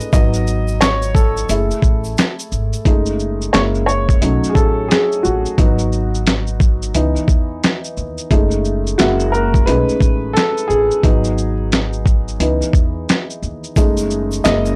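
A warm, intimate upright piano carries this reflective, nostalgic lo-fi hip hop excerpt with a swung feel, its audible action noise and vintage cassette-tape coloring sitting up front over chords like G#m7, F#m69 and B13. Beneath it, a compressed, overdriven sampler-style drum kit pairs a thumpy kick and medium-tuned snare with hi-hat and shaker, while a dark, woody pizzicato upright bass on gut strings adds tube-saturated depth. A grainy, bright egg shaker sits in the background for the opening 2.9 seconds and returns at 13.8 seconds, all within a dry, gritty recording touched by light reverb.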